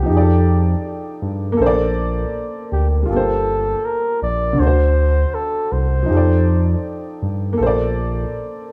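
A breathy flugelhorn, a dark upright piano and a smooth synth bass open together in this reflective, hazy hip hop excerpt with a swung sixteenth-note feel. The flugelhorn carries a soft-edged jazz melody with light vibrato and tape echo. Beneath it the woody, slightly detuned piano, its action noise audible, comps through rich jazz chords while the up-front bass, mellow with a touch of ring modulation, holds the low end. The flugelhorn falls away at 7.2 seconds, leaving the other two parts in a rough home-demo mix with a small room's reverb.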